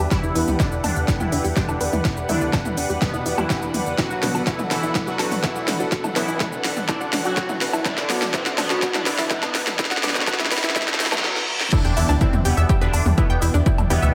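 A punchy, tape-warm electronic kick drum anchors this dramatic, hypnotic melodic techno excerpt in E minor at 124 BPM. An up-front techno kit adds a cracking snare, smooth hats, shaker, toms, woodblock and crash, re-recorded in a small room. A tight, driving sequencer bass and a round analog pluck arpeggio pump under sidechain compression, the pluck trailing an analog delay. A juicy, detuned, resonant polysynth melody is run through phaser and a diffuse ambient delay. Far behind sit a muted, deep dub chord stab with a cassette-tape tint and a lush, thick, nasal unison pad holding Em7 and Bm7. Filter sweeps drive a build-up; a very quiet reverse cymbal enters at 10.8 seconds, and the drop lands with an impact at 11.7 seconds, all bathed in a dreamy plate reverb.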